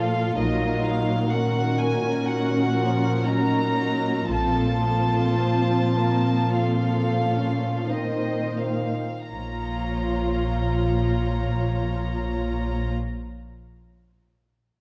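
A dark, woody cello section sits up front, holding a low Bb2 beneath this slow, romantic orchestral fragment in Bb minor. Around it, a lush viola section adds darker accompaniment with vibrato. Two intimate chamber violin sections play sul tasto with soft attacks and light vibrato: one carries the yearning melody between Eb5 and Bb5, and the other traces a second line below it. A close double bass section joins at 0.4 seconds on a deep Bb1, bowed gently in the same soft, veiled manner. The rubato pulse moves between 40 and 67 BPM and slows through the opening passage, with harmony shifting from Ebm/Bb to F7/Bb before settling on Bbm at 9.3 seconds. A wet scoring-stage reverb and a dark, warm production wrap the strings in a melancholic glow.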